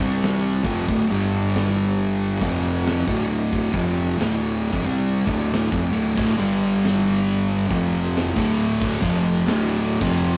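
A thick fuzz guitar sits up front with a grinding riff over a swung 4/4 groove, while a second, darker fuzz guitar plays its own riff further back and a fuzzed, overdriven fingered bass rumbles underneath. A big rock drum kit in a roomy space adds a fat snare, punchy kick, hi-hat and crash, and at 6.2 s a double-tracked, compressed distorted guitar joins in the background as the chords move through C5, Dm, G5 and F5. This ominous, heavy stoner and doom metal excerpt has a rough rehearsal-room sound with light reverb, tube saturation and a muffled top end.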